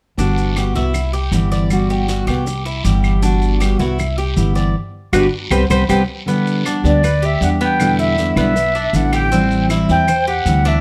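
A silver concert flute carries the melody from 6.9 seconds, airy and tongued with vibrato, placed up front yet sounding distant through a plate reverb. This relaxed, sunny latin piece in the Cuban son and guajira style moves at 158 BPM in a straight 4/4 in G major, and it is cut from a longer piece. Up front, a full-bodied fingerpicked steel-string dreadnought guitar and a thumpy, woody pizzicato upright bass on gut strings ground the music, while a Cuban tres adds picked arpeggios with metallic double strings, some doubled at the octave. Dry claves, a raspy guiro and grainy, compressed maracas sit in the background. The harmony alternates between Gmaj7 and Cmaj7 up to a band accent from 4.8 to 6.3 seconds, then moves through G, Em7 and Am7 as the flute arrives, all within a dark, warm production with light reverb.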